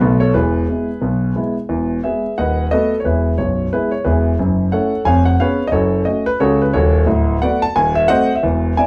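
A brisk, swung eighth-note pulse drives this exuberant stride-jazz fragment, cut from a longer piece, in which a solo concert grand carries everything from 0.0 to 8.9 seconds. The piano sits up front with an intimate, natural tone, deep bass and audible action noise, reaching from its lowest register up to the upper middle. The lively harmony moves from B7 to E and on through F#m7, D6 and D#dim7, all set in the wet ambience of a studio room.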